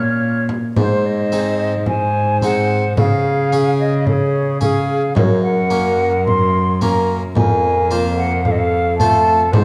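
Dark production in a moderate recital hall reverb surrounds this short cut from a rustic, solemn renaissance-style consort dance in 4/4, moving at a straight 110 BPM through chords from Bbm and Ab to Db, Gb and a closing Fsus4 resolving to F. An airy, expressive concert flute carries the melody with vibrato from a distance, an alto recorder with woody chiff adds a second line, and a nasal, thin harpsichord plucks the accompaniment. Underneath, an up-front cello with period gut-string tone holds the bass, while a small, compressed frame drum struck with hard hands joins at 0.5 seconds.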